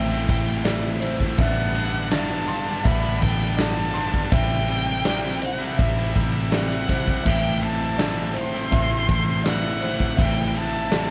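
Cut from a longer cathartic, brooding post-rock piece at 82 BPM in A dorian, this passage opens with a veiled, con sordino violin melody played by a single bowed player with vibrato, mellow felt-muted upright piano arpeggios in the background, an overdriven, picked electric guitar riff alongside a dark, sludgy distorted guitar sitting further back, and a round, amped vintage bass holding a low A, with a huge arena drum kit of punchy kick, medium-tuned snare and bright crash and ride cymbals arriving up front at 0.3 seconds, all moving through Am7, Gmaj9/A, Cadd9/A and Am in a moderate concert-hall reverb.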